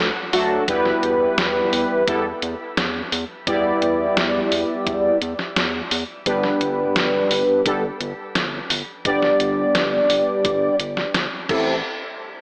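Moody and driving, this synthwave excerpt at 86 BPM opens with a soft, round pluck arpeggio that sounds only for the first 0.6 seconds over a deep analog bass, before bold, nasal synth brass stabs with chorus, delay and shimmer reverb take the front alongside a tape-tinged 8-bit drum machine snare, hi-hat and crash, joined at 0.7 seconds by a knocking electronic kick, all moving through D, Em and G to Am7 in a lush hall with a lo-fi AM radio character.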